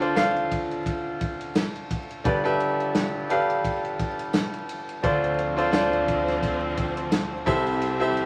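Swung sixteenths in 4/4 drive this short, earnest and dramatic slice of piano-driven pop, cut from a longer piece. A bright grand piano up front carries the accompaniment over a natural acoustic drum kit with a punchy kick, ride cymbal and medium-tuned snare, while a jingly tambourine sits close yet in the background. At 5.0 s a lush, smooth-topped string section enters with bowed, vibrato-rich sustained chords, all set in a club-style reverb with a layer of vinyl crackle.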